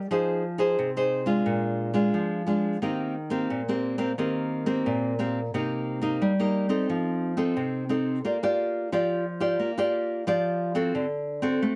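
A sunny, festive nylon-string guitar plays solo throughout this short samba excerpt at 89 BPM in straight 4/4, its fingerpicked, classical tone sitting up front with a touch of light reverb as it moves through Fm7, Bb7, Eb6, Cm7, F7, Bb6 and D7 between Bb2 and D5.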